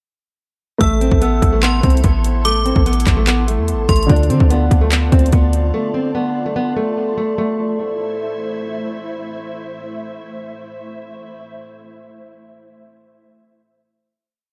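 Melancholic and eerie, this short trap piece in A minor rides a half-time feel at 146 BPM, moving from A minor to D minor seventh before settling back on A minor. A dark, full-bodied nylon-string guitar carries the fingerpicked melody up front, a looping phrase repeated like a sample and softened by a low-pass filter and tape echo. Behind it, a mellow baby grand piano holds spread chords, also looped and filtered, while a metallic, inharmonic FM bell rings out a sparse, bright counter-melody with chorus and tape echo. A boomy 808-style bass with a fast attack plays long sub-bass notes with pitch slides that follow the kick, and an overdriven trap kit hits hard with a clipped kick, handclaps and fast hi-hat rolls. Entering at 1.3 seconds, a glassy, warbling FM pad with ensemble chorus and long release sustains beneath the other parts, and after the drums and bass stop around 5.6 seconds it carries the final chord through to 11.4 seconds, all inside an echo-heavy digital ambience.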